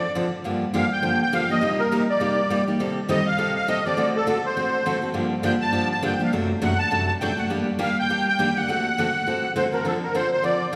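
A reedy, shimmering musette accordion carries the melody up front over a bright, full-bodied picked steel-string acoustic guitar from the very start of this fiery, swinging jazz fragment in G minor at 204 BPM, the pair moving through a minor progression from Gm7 to Ebmaj7 and D7, bathed in a wet church reverb that gives the hall a long, ringing tail.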